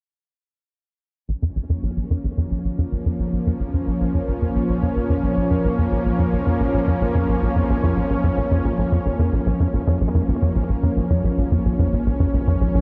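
Expansive and hypnotic, this ambient, sequencer-driven space music piece opens at 1.3 seconds with a punchy, nasal sawtooth sequencer bass riff carrying a filter sweep, ensemble chorus and tape echo, beneath a thick, detuned unison pad holding sustained chords with chorus, before a mellow, very quiet analog drone with pulse-width modulation slips in at 3.7 seconds, all set in a dark production with a huge ambient reverb.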